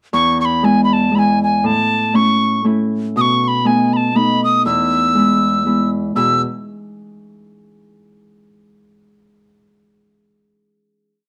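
A mellow, airy tin whistle with vibrato and a soft attack opens alongside a ringing, fingerpicked Celtic harp, the whistle spinning an expressive, motif-based tune up high while the harp keeps a lilting pulse of bass notes and chord figures through E, A, B7 and back to E, in this rollicking, bright Celtic waltz in E major at 119 BPM with a light swing, before the short piece settles on a final chord at 6.2 seconds in a dark, close, moderately reverberant studio sound.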